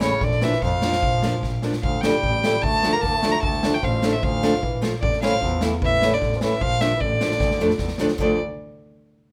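A reedy, gut-string violin with light vibrato carries the soulful, festive klezmer melody up front in D harmonic minor at 151 BPM, speeding up throughout, over a mellow, distant bassoon second line, bright fingerpicked nylon-string guitar, smooth bowed double bass and an airy street-band drum kit with a boomy kick and dark cymbals that plays fills at 1.4 and 7.4 seconds, all moving through Bb, Dm and A in a moderate studio reverb in this short cut from a longer piece.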